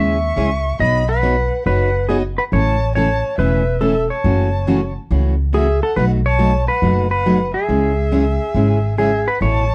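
Down-home and cheerful, this short western swing country excerpt at 139 BPM swings in 4/4 over a C#m, Badd9, A, F#m7 and B7 progression. A twangy, compressed lap steel carries the melody up front with slide and volume swells, and a smooth bowed erhu traces a quieter second line above it with vibrato and portamento. A picked dreadnought acoustic guitar with fresh strings supplies crisp accompaniment, and a woody, thumpy upright bass anchors the bottom, all set in light reverb.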